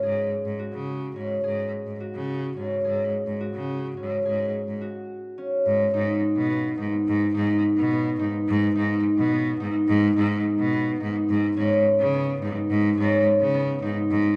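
In a straight, uneven 5/8 pulse, this hypnotic, restless chamber excerpt sets a fingerpicked concert harp ringing out arpeggios above a bright, intense cello bowing the bass line with light vibrato and a smooth top, both up front in a reverberant recital hall as the harmony moves from G#7sus4 to G#m at 5.7 seconds and Bsus2/G# at 11.3 seconds.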